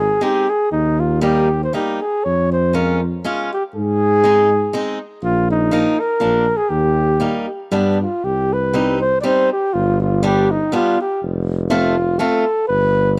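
A mellow, close-miked flugelhorn carries the melody up front in a classical style, leading this festive, jolly alpine folk dance band piece at 120 BPM in 3/4 with a swung, rubato feel. Beneath it, a tuba holds the bass with a light vibrato, its tone distant and roomy, while a bright, boxy acoustic guitar picks a swing-style accompaniment from 0.2 seconds to 12.4 seconds. The music sits in Eb major before turning to C harmonic minor at 8.2 seconds, where a new section moves from Cm through G and F. The sound is dry and close in the manner of a 1970s studio recording, with a small room ambience around the players. Cut from a longer piece, the passage feels cheerful and jolly, like a moment lifted from a village celebration.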